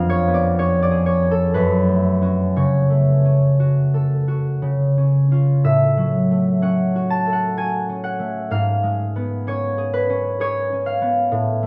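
Gentle and wistful, this brief classical passage, cut from a longer piece, features a solo concert harp in an unhurried, rubato triple metre, its thumb-plucked, ringing tones sitting up front and captured in close detail with a touch of light reverb throughout its 11.7 seconds.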